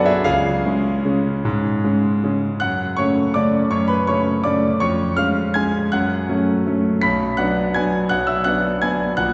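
A solo concert grand piano opens this brief fragment of a bittersweet, elegant classical waltz in F# minor, moving in a rubato 3/4 at around 150-177 BPM. The piano's tone is clear and smooth with a deep bass and a vintage character, spanning A#1 to B6 as the harmony settles on F# minor at 2.6 seconds and later turns to B minor at 7.0 seconds. A wet concert-hall reverb with a 2.0-second decay surrounds the playing, heard from further back in the room with the highest frequencies rolled off.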